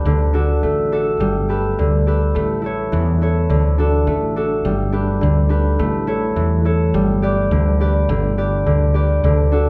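Swinging in 4/4, this cheerful, lively Celtic reel, cut from a longer piece, sets a mellow, ringing fingerpicked concert harp over a dark, round and punchy woody fretless electric bass, both up front across the full 9.7 seconds as the chords move between D, Gadd9, G and A, with the band playing live in one room under a wet large-studio reverb.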